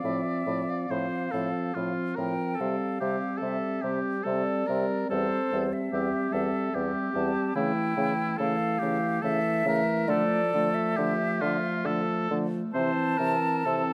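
A yearning, solemn slow romantic movement for wind quintet in a rubato 3/4 at 64-74 BPM, cut from a longer piece, opens with an airy, close-miked concert flute singing the melody with vibrato over a clear, up-front oboe second line, while a smooth-topped French horn and distant clarinet fill the accompaniment above a roomy bassoon bass, all set in a moderate scoring-stage reverb as the harmony settles into D minor from 7.6 s.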